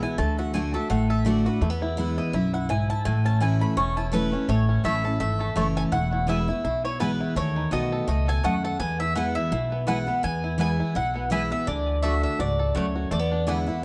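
A brisk, virtuosic bluegrass excerpt opens with a picked mandolin's up-front stabs, colored by tape echo, over a bright, full-bodied dreadnought guitar, a twangy, percussive banjo played with fingerpicks, and a growly pizzicato upright bass. A second, double-strung mandolin takes up the melody at 4.1 seconds, its woody, picked tone leading the band through shifts from D and E toward a B7 and a closing E7. The rustic, swinging ensemble sits in a dark production with light reverb.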